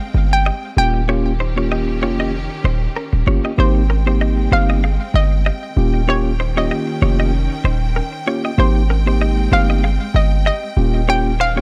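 A lightly swung sixteenth-note groove in four gives this afrobeats excerpt its easy, sunny lilt, with a romantic glow over an alternation between two seventh chords. A punchy 808-style bass sits up front from 0.1 seconds, its heavy sine tone carrying a noise layer and a fast, decaying attack. The lead melody comes from a hollow, nasal square-wave pluck, detuned with a sub octave and treated with chorus and delay. A bright, twangy clean electric guitar, recorded direct, plays a picked, compressed riff with its own delay. A lush studio string section holds bowed chords with vibrato, and a mellow tine electric piano joins on accompaniment at 0.8 seconds. The sound is dry and close, and after a brief opening passage a longer second section begins at 3.6 seconds.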